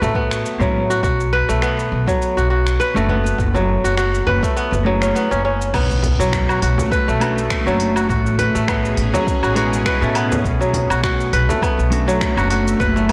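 A lightly swung 102 BPM groove in 4/4 carries this mystical, earthy organic downtempo excerpt, where a bright, ringing kora's up-front arpeggios and a woody, thumpy pizzicato upright bass ride over crisp-hatted electronic drums with cabasa, snaps and woodblock, a punchy layered kick that drops out from 4.6 to 5.7 seconds, and a very quiet frame drum, while a dark, clean electric guitar sits in the background under a filter sweep, a faint impact lands at 5.7 seconds, and a tense, detuned, string-like drone joins at 6.7 seconds through chords moving from Amaj9 to Bm9, all in a lush hall reverb with a blown-out, overdriven sound.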